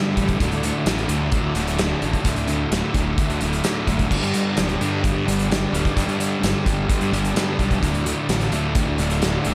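A bright, compressed fuzz guitar riff leads this brooding, cathartic quiet-loud alternative rock excerpt over D and G chords, joined by a darker, thick fuzz guitar riff further back, while an overdriven, round fingered bass and a loose, punchy acoustic drum kit with dark cymbals enter at 0.2 s, a very quiet, fat tonewheel organ with key click and slow rotary speaker holds sustained chords underneath, and a lush hall reverb gives the mix a big arena sound.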